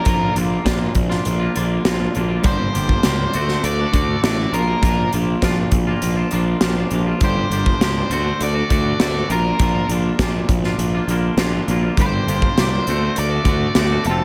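The fuzz-driven electric bass sits up front, dark, round and punchy, beneath an octave-fuzz lead guitar carrying a distorted melody with digital delay, a bright, twangy, clean guitar picking arpeggios with subtle chorus, and a big acoustic rock kit with a punchy kick and medium-tuned snare, all in an angsty, cathartic quiet-loud alternative rock passage at 101 BPM cycling through Bb, Gm7 and D in a small, lightly reverberant room.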